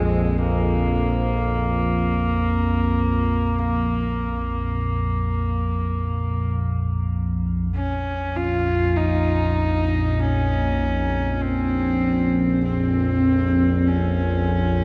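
Unsettling and dark, this dark ambient drone in Bb minor drifts in free time, a short passage cut from a longer piece. An analog drone sits low and up front from 0.0 to 14.8 s, its evolving blend of sawtooth, pulse-wave, sine and wave-folded tones shaped by pulse-width modulation, slow attacks, long releases and a chorus shimmer. Above it, a single horsehead fiddle carries the melody between Ab3 and F4, its bowed horsehair strings earthy and husky with a smooth top, gliding between notes in portamento and trailing a diffuse ambient delay. Both parts sound throughout, with the drone sitting slightly louder than the fiddle. The whole is bathed in a cavernous cathedral reverb with a 5.4-second decay, and the production stays dark and warm as the music moves into a second section at 7.7 s.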